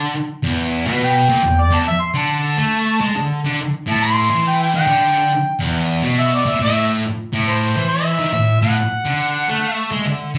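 A mellow, lightly vibratoed harmonica takes a jazz-style solo over a thick, double-tracked fuzz guitar riff from the very start. This raunchy, swaggering rock plays at 139 BPM with a swung 4/4 feel, moving from Em through Am7 and on to Am and D. The overdriven harmonica sits distant and roomy behind the bright, up-front guitar, and both carry a slapback echo in a club reverb heard through the venue's PA on this fragment cut from a longer live performance.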